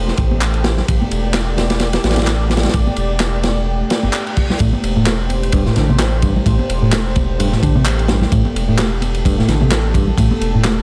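This funky, gritty breakbeat excerpt rides a swung 129 BPM groove in 4/4, built on a crunchy drum kit whose tight kick, medium-tuned snare and dark ride cymbal sit up front with a saturated, rolled-off top and small-room feel. Layered electronic handclaps with a tape-warm, large-room character join at 0.4 seconds, while ringing congas sit close but in the background. Underneath, a deep, thick sine sub bass holds the low end on sustained, fast-attack notes, and a moody sawtooth pad in A minor sustains an Am7 chord with slow-attack detuned layers, chorus, vintage 12-bit sampler grit and sidechain pumping. A reverse cymbal sounds faintly in the background just before a picked electric bass riff enters at 4.6 seconds, its direct-and-amped tone carried on tape echo. The whole track sits in a studio reverb that lends the gritty mix a shared space.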